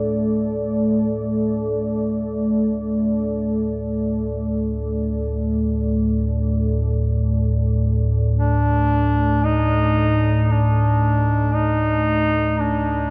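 Drenched in the long cathedral reverb of a vast, echoing space, this cavernous dark ambient drone, tuned to A4 = 435 Hz and cut from a longer piece, opens on a deep, rumbling synth drone with a warbling, vintage tone, lush chorus and a filter sweep, beneath a moody, detuned analog pad that holds sustained chords with chorus and gradually fades out. At 8.4 s a warm duduk enters up front with a solo folk-style melody of scooped notes, trailed by tape echo.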